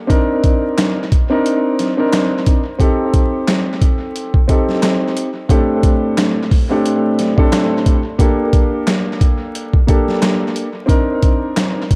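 A dark, mellow baby grand piano and a gritty sampler-style drum kit begin together at 0.1 s in this moody, reflective boom-bap hip-hop passage in G minor, moving at 89 BPM with a swung 16th-note feel. Filtered and colored by cassette tape and tape echo, the up-front piano plays smooth, long-sustaining vintage chords from Cm9 through Am7b5, D7sus4/A and Gmadd9 before returning to Cm9. The compressed, up-front kit of thumpy kick, medium-tuned snare, handclaps and hi-hat carries its own tape echo and large-room character, while light reverb, an echo-heavy mix and vinyl crackle frame this cut from a longer piece, with the piano stopping at 11.8 s and the drums at 12.0 s.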